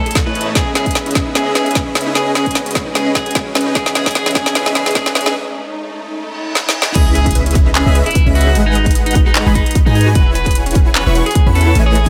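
Lightly reverberant and digitally polished, this lush, bright future bass clip builds over punchy layered kick, a trap kit with woody snare, metallic hats, claps and crash, and a boomy 808 bass, while a huge detuned supersaw riff and a twangy, slightly broken-up electric guitar melody pump under sidechain, a very quiet bowed string section holds smooth chords, a faint warbling pluck arpeggiates, and a soft riser and reverse cymbal lead to an impact at 7.0 s, where the drop begins and an airy, dreamy chorused lead adds arpeggios in the background.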